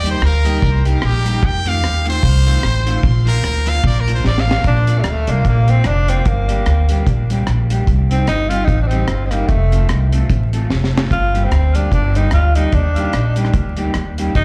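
Ska at 149 BPM in Bb major with a bouncy, upbeat swing, this excerpt opens with a brilliant, forceful trumpet solo carrying slapback and tape echo until a drum fill hands the melody at 4.7 seconds to a breathy, whispered tenor saxophone, all over a mellow, clean fingered electric guitar, a woody, thumpy pizzicato upright bass placed up front, and a deep, dry reggae drum kit with a high-tuned snare and tight kick, heard through a club PA with vinyl crackle.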